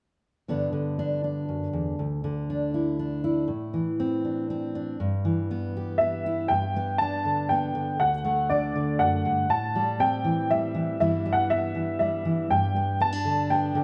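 A dark, full-bodied fingerpicked steel-string guitar opens this nostalgic, anthemic folk excerpt in three, its finger squeaks up front, until a worn, woody, slightly detuned upright piano enters at 6.0 seconds to carry a high melody through a digital delay, both set in a moderate large-studio reverb.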